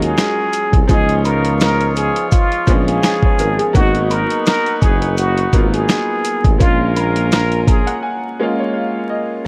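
Boom-bap hip-hop at 84 BPM with a lightly swung sixteenth feel and a gritty, reflective mood, moving through Ebm11, Db7, Abm9 and Bbm7 under a layer of vinyl crackle and little reverb. A gritty, compressed sampler-style drum kit with a thumpy kick sits up front beside a mellow tuba bass with light vibrato, while a plunger-muted trumpet carries a wah-wah jazz melody over a worn, woody, slightly detuned upright piano with a cassette-tape character. A vintage saxophone section adds stabs through analog delay in the background, very quiet maracas and woodblock tick along, and everything else drops away by 8.0 seconds, leaving the piano alone in a break until 9.5 seconds.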